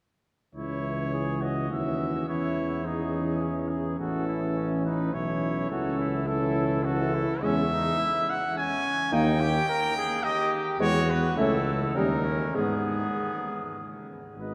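A cathedral's long, wet reverb surrounds this brass quintet, casting the players in a distant, roomy space. Moving in a rubato triple metre, the music is grave and solemn, a fragment cut from a longer piece. A clear trumpet carries the melody up front, while a second trumpet with a warm, vintage tone traces a lower line beneath it. The tuba anchors the bass from the opening with a soft attack and light vibrato, sitting forward in the balance, as the mellow French horn and the euphonium, both with light vibrato, fill in the accompaniment from the background. The harmony shifts to a new minor centre at 7.4 seconds and passes through a seventh chord before settling on G# minor at 12.6 seconds.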